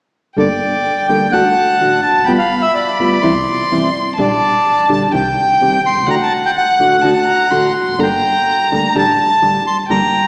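Rubato tango at 126 BPM in 4/4 and G harmonic minor, passionate and dramatic, where a reedy, dark bandoneon carries the melody up front, a bowed violin adds an expressive second line with vibrato and portamento, a full-bodied, thumb-plucked nylon-string guitar accompanies with audible finger squeak, and a woody pizzicato upright bass sits in the background, all heard from further back in a concert hall with a long 2.3-second reverb and a small-speaker tone, in a short cut from a longer piece.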